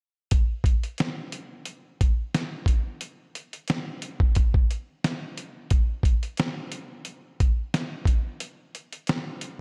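Dark production with a light reverb gives this short hip hop cut a soulful, unhurried air. It moves at 89 BPM in 4/4, with a gentle 55% swing on the sixteenths that lends it a relaxed lean. The only part is a dusty, sampler-style soul drum kit of hi-hat, kick and snare, playing from 0.3 to 9.6 seconds. The kit sits up front and sounds compressed and gritty, with a thumpy kick and a medium-tuned snare at their natural pitch. This single section is taken from a longer piece.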